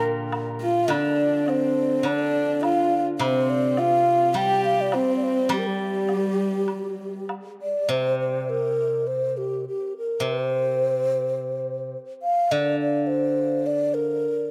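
A breathy, hollow low xiao carries the tender, wistful melody up front with soft-attack vibrato and a touch of analog delay, in a rubato Chinese traditional chamber piece in G yu mode, felt around 104 BPM in 4/4. A silvery, fingerpicked steel-string zither rings beneath it in the low register, while a husky, woody horsehead fiddle adds a close second line with portamento and its own analog delay, and a close, dry woodblock taps along. The fiddle and woodblock fall away by about 7.4 seconds, leaving xiao and zither to finish this fragment of a longer work in a moderate spring reverb.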